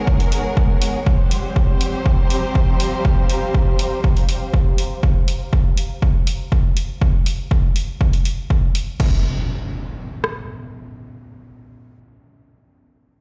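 A punchy analog drum machine drives this cinematic, melancholic melodic techno excerpt, its dry, up-front kick and rim click joined by crash cymbal and hi-hat, all sounding as if played through a big sound system in a bare room with large studio reverb. For the first 5.0 seconds a distant, lush bowed string section with vibrato and portamento holds sustained chords over Abm and Csus4, blended with an ethereal, detuned sawtooth pad carrying ensemble chorus, both pumping with sidechain compression. An electronic impact lands up front at 9.0 seconds as the piece moves into a new section.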